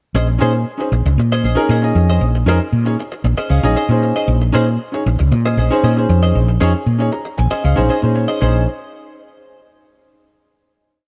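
Slick and nocturnal, this short jazz piece moves at 116 BPM in a straight 4/4 in Bb minor, built on a woody, round fretless electric bass that sits up front with a syncopated riff. A clear, intimate grand piano plays rootless funk chord rhythms with audible action noise, adding fills at 3.2 and 6.9 seconds, while a quieter, twangy, direct-recorded clean guitar picks bright upper chord shapes in funk strumming, bathed in lush chorus. The groove opens on a Bbm11 and settles onto a final chord at 8.4 seconds, all in a dark production with light reverb.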